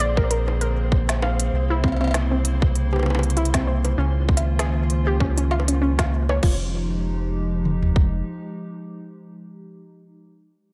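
Cut from a longer piece, this clip has a lightly reverberant, digital ambience, with an overdriven electronic drum kit that sounds re-recorded in a large room. The music is eerie, cerebral IDM in 4/4 with a gentle swing on the sixteenths, moving through Bb9, C7b9 and Db69 before landing on Fm9. Up front, a tight kick and toms share the low end with a round analog bass, deep and dark with tube saturation, while bongos, cowbell, crash cymbal, a woody snare and crisp hats sit a little further back. A warbly, tape-like pad holds nostalgic, detuned chords with chorus and built-in reverb, and a dusty, lo-fi pluck plays arpeggios through chorus and delay with an evolving filter sweep. A grainy, flickering texture hovers in the background on a single high note. The upper parts drop away around 6.4 seconds, leaving the bass and kick until about 8.2 seconds and the pad alone until 9.6 seconds.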